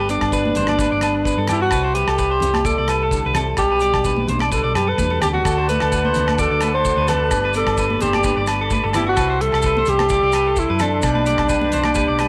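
Highlife guitar band music with a carefree, danceable lift, this short cut from a longer piece moves in a straight 4/4 over a bright cycle of G, C and D chords. A breathy alto saxophone carries the melody up front, its whispered, intimate tone and light vibrato giving the line a soft, pop-style sweetness. Beneath it, a twangy electric guitar at the edge of break-up picks arpeggios through tape echo, while a small, fingerpicked nylon-string guitar sits in the background and a hollow-body short-scale electric bass supplies a dark, round low end. A damped 70s drum kit, dry and tight in the kick with hi-hat and rim click, drives the groove alongside background maracas, ringing agogo bells and high-tuned congas struck with hard hands. During a drum fill that begins at 5.0 seconds, a fat, lightly overdriven tonewheel organ enters at 5.4 seconds with percussive sustained chords through a slow rotary speaker, and a light studio reverb gives the whole a polished finish.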